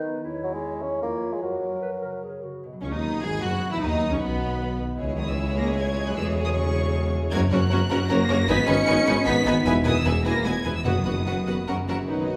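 In a triple metre, this lively, cheerful excerpt from a dramatic, fast romantic orchestral movement opens with a mellow clarinet, hollow flutes and a warm bassoon over bright, ringing harp arpeggios, before lush, vibrato-rich violins take the melody at 2.8 seconds, joined by a second violin line, violas, expressive cellos, mellow tuba and double basses, with close, dry timpani at 10.8 seconds and dark horns and trombones adding sustained chords at 12.1 seconds, all in a wet recital hall reverb.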